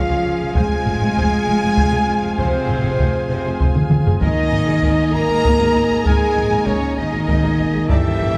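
Dramatic and relentless, this brief slice of epic orchestral film score moves at 65 BPM in a straight 6/8, with taiko drums struck with hard sticks driving from 0.6 seconds and a drum fill between 3.7 and 4.2 seconds, while the harmony shifts from Db to F minor and on to Absus2. A focused, vibrato-laden violin section carries the melody over a distant second violin line, an airy flute group, lush background violas, close cellos and background double basses on the bass, mellow punchy French horns and a soft flute-stop pipe organ holding chords, and clear trumpet stabs. A very quiet, dry timpani with hard mallets enters at 7.9 seconds, and the whole piece sits in a wet concert hall with a dark production.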